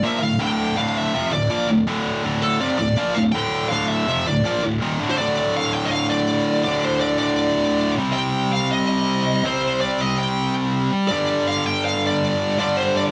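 A distorted, high-gain lead guitar carries a bright melody over an up-front, double-tracked heavy guitar riff in this dark, aggressive metal excerpt at 162 BPM in 4/4, moving from D minor into D phrygian as the feel drops to half time at 5.2 seconds, all set in a moderate studio reverb with a dark, warm production.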